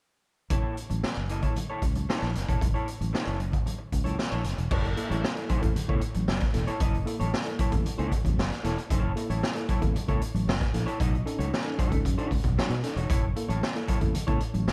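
A straight 4/4 funk groove drives this energetic, gritty cut from a longer piece. A raw garage drum kit sits up front with kick, snare, hi-hat and crash, its boomy kick and medium-tuned snare sounding saturated and rolled-off in a small room. A growly fingered electric bass anchors the low end with a bright, amped tone, while an electric guitar through a small old amp adds slightly broken-up, picked, lo-fi accompaniment, and very quiet, thick-skinned congas played with hard hands join at 0.9 seconds. At 4.7 seconds a worn, slightly out-of-tune tine electric piano enters with lightly overdriven stabs through its built-in speakers, opening a new section. The harmony rests on F#7#9, shifts to B9 at 11.0 seconds and returns, all set in light reverb within a dark, warm production.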